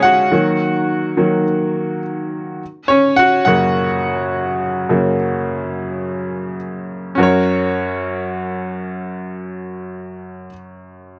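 A bright, woody upright piano carries this short, uplifting pop passage alone from 0.0 to 11.2 seconds, its audible action noise and up-front presence giving it an intimate, polished character. At a straight 105 BPM in 4/4 and F# major, tuned to A4 = 438 Hz, it spans F#2 to G#5 and moves from D#m to F# at 2.6 seconds, carrying an anthemic feel. Light reverb touches the piano within a dry, close 1970s-style studio sound, and the clip is cut from a longer piece.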